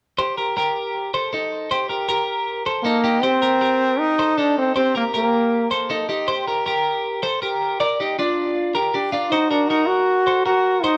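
Indie pop with a nostalgic, bright mood, this cut from a longer piece puts a twelve-string electric guitar's clean, twangy, compressed arpeggios up front in plate reverb and tape echo, while a brilliant, punchy trombone with vibrato sings the melody in forceful pop-style phrases beginning at 2.8 seconds and returning at 9.3 seconds, inside a short, wet studio reverb.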